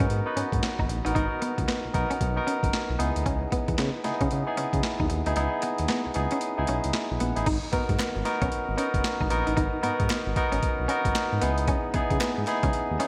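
Swung sixteenths at 114 BPM drive this confident, bouncy new jack swing excerpt in G# minor, where a gritty, overdriven boom bap sampler kit with a thumpy kick and high-tuned snare sits up front beside a barky tine electric piano, a smooth, dark sawtooth-and-triangle synth bass holds the low end, a twangy, slightly broken-up electric guitar riff with analog chorus hangs in the background, the kick drops out from 5.4 to 7.5 seconds while an electric piano fill enters at 6.7 seconds, and a crisp, very quiet group handclap joins at 8.0 seconds, all set in a lush hall reverb with bright 1980s-style digital production.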